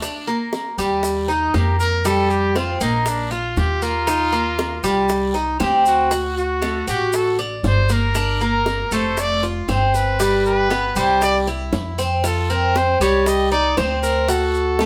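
A bright trumpet with vibrato takes the solo up front from 1.3 s, over a picked, metallic Cuban tres whose double-strung arpeggios ring from the start of this danceable Cuban son and guajira cut in G minor at 118 BPM. A dark, thumpy pizzicato upright bass with gut strings joins at 0.8 s. Tight, high-tuned bongos and grainy maracas sit in the background, woody claves and a raspy, saturated guiro stay very quiet, and the band plays live in one room with moderate studio reverb.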